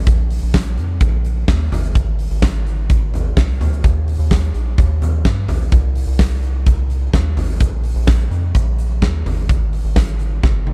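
A round, deep analog bass opens this bittersweet, dramatic pop piece at 0.0 seconds, moving between G1 and G2 in C minor. An acoustic arena-sized drum kit joins at 0.1 seconds in a straight 4/4 at 127 BPM, with hi-hat, kick, snare and toms placed up front. The kit has a fat snare, a punchy kick and a hall sound with a pumping room quality. The bass blends square-wave and sine tones with a moving notch, a fast attack and sustained, dark notes. A drum fill at 10.4 seconds closes this short cut from a longer piece, and the overall mix carries little reverb.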